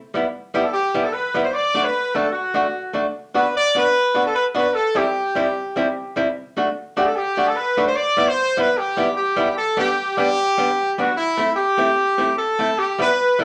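A tight, clear horn section carries the melody up front in this bouncy, upbeat ska cut from a longer piece, moving at 150 BPM in G major with a light swing, while a dark, clean, compressed hollow-body archtop guitar plays picked accompaniment from 0.1 seconds, both set in a wet club reverb over chords that travel from Em through D, Bm and C before closing on G, Am and Em.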